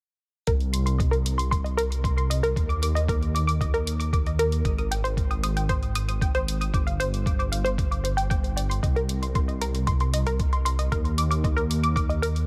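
From 0.5 s, a muffled, thumpy kick, an overdriven hi-hat, a deep, rumbling detuned saw bass and a round, bright, wave-folded analog pluck arpeggio with chorus and tape echo begin together in this cinematic, melancholic electronica excerpt at 115 BPM in 4/4, with the bass and pluck pumping to the sidechain and a light reverb around them.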